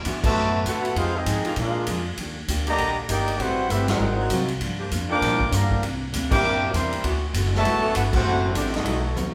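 This brassy, joyful big band swing excerpt opens with upright bass and a swinging drum kit together at 0.0 s, driving a brisk 198 BPM in 4/4 with a swung eighth-note feel. The pizzicato bass is woody, and the punchy kick and medium-tuned snare sit up front alongside hi-hat, ride, crash and toms in a natural big-room sound. A picked steel-string acoustic guitar comps in the background, while a very quiet saxophone section holds tight sustained chords with light vibrato. A clear trombone section carries a second line beneath the mellow trumpet section, which leads the melody up front with a smooth top. The harmony moves through rich jazz chords from D69 through Ebmaj7 and G#13 to F#m7b5, punctuated by band accents such as the one at 3.9 s. The whole band plays live in one large studio with moderate reverb, and a drum fill at 9.2 s closes the passage.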